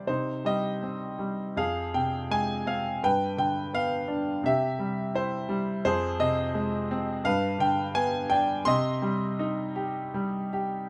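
Touched by a light reverb, this short classical cut from a longer piece features a solo grand piano that sounds bright, worn and up front, playing with lyrical rubato at about 84 BPM in 4/4, its peaceful, warm mood rooted in C harmonic minor as the chords move from Cm through Fm and G7 before settling back on Cm at 8.7 seconds.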